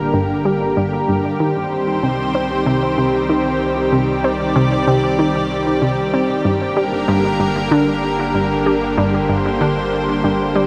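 A lush, thick unison pad sits up front, holding bright, detuned sawtooth chords that move from Gm to Cm and back to Gm at 6.5 seconds. Beneath it, an analog pluck with a nasal, wave-folded edge plays a riff through chorus and delay, while a round sine sub bass fades in deep in the background. Bathed in a huge ambient reverb, this fragment of sequencer-driven space music feels mysterious and cosmic.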